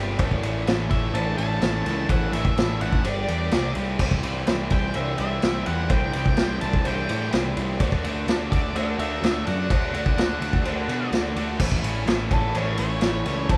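Classic rock with a confident, sunny mood and a straight 4/4 feel, this clip is cut from a longer piece and played by a band live in one room with light reverb. Two cranked stack guitars drive the riff from the very start, bright and overdriven but sitting in the background. A fuzz picked electric bass is up front, its overdriven tone warm and fuzzy. At 0.2 s a vintage acoustic drum kit joins with a punchy kick, a medium-tuned snare, dark crash and ride cymbals and a saturated, gritty, rolled-off character, alongside a very quiet, band-limited metallic cowbell. An octave-fuzz lead guitar carries the melody from 0.9 s with a dark, distorted edge as the chords move through A, G5, C5, C and D before returning to A at 11.6 s.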